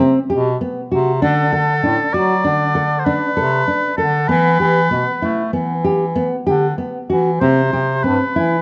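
Restless and shimmering, this short chamber-music passage from a longer contemporary instrumental piece moves at 97 BPM in an uneven 5/4 meter with a straight feel, tuned slightly high to A4 = 445 Hz. A nylon-string guitar, thumb-plucked with fresh strings and a full-bodied, deep classical tone, spins arpeggios from the start, while a clear bass clarinet carries the bass line beneath it, sounding distant and roomy yet still up front. At 1.2 seconds a warm oboe enters with the melody, its vibrato and punchy attack paired with a smooth top in a classical style. The harmony moves from Cmaj7 with the third omitted through D and Em before settling on Cmaj7 at 7.4 seconds. Light reverb and close, detailed microphones keep the three instruments intimate and finely resolved.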